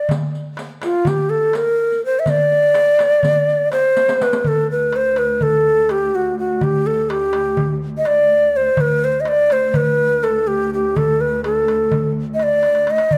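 Soulful and full of longing, this Turkish makam ensemble piece moves at 249 BPM counted in eighths, in a straight 9/8. It opens in D makam ussak and shifts to D makam hicaz at 4.4 s. At that moment the riq's bright, jingling, vintage-toned part stops and a rich, focused chamber cello section enters, holding a bowed D2 drone with vibrato. The end-blown ney carries the melody throughout, sitting up front with a breathy, reedy cane tone, vibrato and tongued notes. Underneath, a small metal-shelled darbuka adds a crisp, high sound played with hard hands, with drum fills at the close of each section, the last at 12.6 s. Light reverb gives the close-miked sound some air in this short cut from a longer piece.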